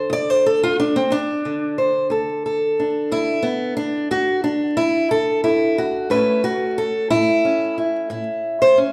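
Acoustic country blues in a soulful, laid-back mood at 60 BPM in 12/8 and D major, this short cut from a longer piece features a solo fingerpicked steel-string parlour guitar, bright and boxy with audible finger squeak, sitting up front in a moderate recital-hall reverb under a layer of vinyl crackle as it moves from D5 to A at 6.1 seconds.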